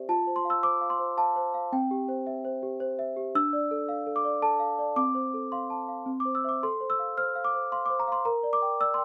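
Classical lullaby in an innocent, tender mood, where a solo celesta, bell-like and delicate with the mellow touch of soft felt hammers, sits up front in a close, detailed and dry recording across a gentle triple metre, its chords moving from F through C, Dm and Gm/Bb in this short cut from a longer piece.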